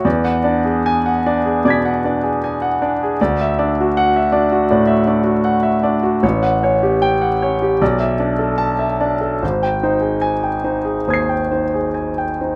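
Light reverb surrounds a polished, up-front concert grand, close enough that the action noise is audible beneath its long sustain and deep bass. This serene, hazy impressionist solo piano passage, cut from a longer piece, moves with uneven, rubato beats through lush extended harmonies, from E9 at the start to Dadd9 and A6, then Bm7 and G#maj7 by 9.4 seconds.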